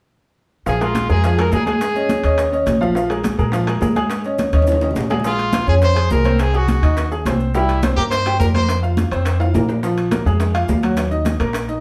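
A fiery, passionate salsa excerpt at 210 BPM in Bb minor opens at 0.7 s with a bright, worn, slightly detuned upright piano, dark, thumpy pizzicato upright bass on gut strings up front, background congas with a thick, high-tuned skin, round, low-tuned bongos struck with hard hands and grainy maracas, with ringing, vintage metal-shell timbales joining at 0.8 s, while a brilliant, forceful solo trumpet with light vibrato carries the melody in two phrases, the second beginning at 5.3 s, with drum fills along the way and a wet studio reverb heard from further back in the room.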